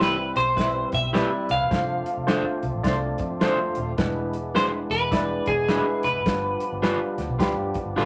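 Uptempo 1960s-style soul in C major at 106 BPM, this joyful, swung excerpt moves through Cmaj7, F6, E7 and G7 as a bright, twangy clean electric guitar carries the melody with a vibrato effect, backed by stabs from a slightly broken-up second guitar and accompaniment from a barky, overdriven tine electric piano. A thick, gritty tonewheel organ with key click holds sustained chords in the background, while a round, foam-muted fingered bass with tube saturation and a dark soul drum kit, up front with a tight kick and snare, keep the groove. A mellow, loose horn section with tube saturation enters at 0.6 s with a distant second line, and a small, wet room reverb wraps the whole band.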